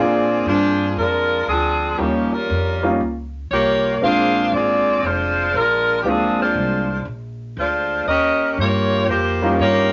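Energetic and joyful, this 9.9-second big band swing clip moves at 118 BPM with a swung 4/4 feel in Bb mixolydian, alternating between Bb9 and Eb9 chords. A warm, up-front saxophone section carries the melody with vibrato and a soft attack, while a clear concert grand piano supplies accompaniment and a woody, thumpy pizzicato upright bass on gut strings anchors the low end. The parts sit in a wet studio reverb with a rolled-off top end, and the passage is cut from a longer piece.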